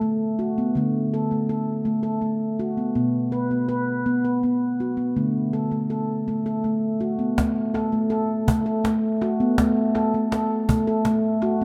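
Dreamy and gentle, this short cut from a longer meditative world piece drifts at 54 BPM in a straight 6/8, set in D major pentatonic. A ringing, stainless-steel handpan, close-miked, dry and up front, plays arpeggios from B2 to B4 throughout, moving over D, B5 and D5 harmonies. At 7.4 s a woody cajon with faint snares joins, touched with tape echo, inside an echo-heavy mix lit by spring reverb and small-room ambience.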